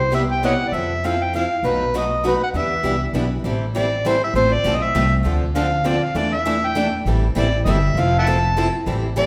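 An overdriven harmonica and a pizzicato upright bass open this fiery, bittersweet fragment of acoustic string swing in a lilting three-time, with two picked steel-string parlour guitars joining at 0.1 seconds. The amplified harmonica carries the melody up front, gritty and full of vibrato, scooped notes and tongue slaps in a jazz soloist's manner. Beneath it, the gut-strung bass sounds woody, dark and thumpy, and it also sits close in the mix. The two guitars are bright and boxy, with finger squeak audible on one of them, and they sit further back as accompaniment. The harmony moves through jazzy seventh chords and shifts into a new section at 3.4 seconds, while the band plays in a wet recital-hall reverb that suggests a church or concert hall.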